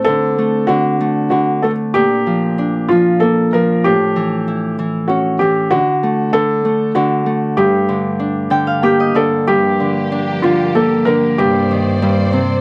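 A soft, intimate felt-muted upright piano carries the melody up front in this gentle, dreamy children's lullaby in G minor, drifting in a rubato 3/4 at 96 BPM. A ringing, fingerpicked Celtic harp accompanies it throughout and adds a fill from 8.2 seconds. At 9.5 seconds a lush, bowed string section quietly joins with sustained chords full of vibrato and portamento, all set in a dry, close 1970s-style studio sound with light reverb.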